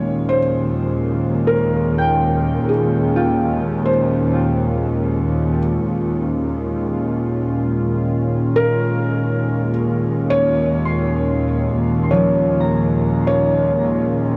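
Bathed in a huge, wet reverb and the warble of worn cassette tape, this luminous, serene ambient excerpt drifts at 51 BPM as a felt-muted upright piano carries a soft, dark, intimate melody with audible action noise and tape echo over a smooth, chorused analog pad, a bright, bowed double bass section with vibrato, and a reedy, very quiet pedal harmonium drone, while a ringing, thumb-plucked concert harp enters at 2.0 s with echoing arpeggios and the harmony shifts from Dbmaj9/Eb to Eb9sus4 at 8.6 s.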